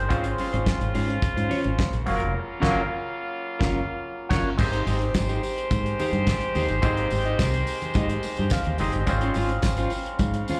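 An overdriven auto-wah clav with slapback echo opens this celebratory, glamorous disco excerpt from a live club gig alongside distant, nasal muted French horn chords and a foam-muted fingered bass sitting up front, while a dark, picked clean guitar with spring reverb, a dry 70s kit with a fat snare and tight kick, and soft, high-tuned congas fill in the groove, a band accent hits at 2.3 seconds, a jingly tambourine slips into the background at 4.6 seconds, and the stringy clav takes a short fill at 8.2 seconds.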